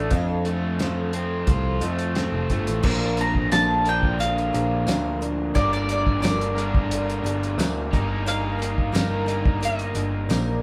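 A band playing live in one room fills a moderate large studio, its reverb lending this dusty, wistful folk rock and heartland rock cut a lived-in glow at 88 BPM in a straight 4/4. A cloth-damped, thuddy drum kit with dark cymbals and a fat snare plays alongside a growly, punchy electric bass that is up front, while a woody, shimmering twelve-string acoustic on old strings and a bright, overdriven, double-tracked garage guitar riff move through F, Bb, Gm and Eb/G. A clean, twangy pedal steel glints very quietly only until 1.4 seconds, then a round, double-strung mandolin takes the melody from 3.2 seconds and a jingly, vintage tambourine joins in the background at 3.5 seconds.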